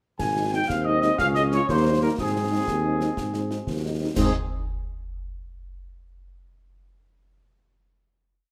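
Rousing and proud, this short, complete military-style march for wind band moves at 121 BPM in 6/8 in Ab major, with a dark, loose trumpet section carrying the melody up front, a smooth-topped solo tuba marking the bass on the beats, mellow French horns adding after-beat chords with light vibrato, a warm trombone section sustaining a distant counter-melody, and a close, dry marching snare over bass drum on the beat with clash cymbals, set in a large studio's reverb as the Ab, Db, Eb and Ab chords lead to a final chord at 4.2 s.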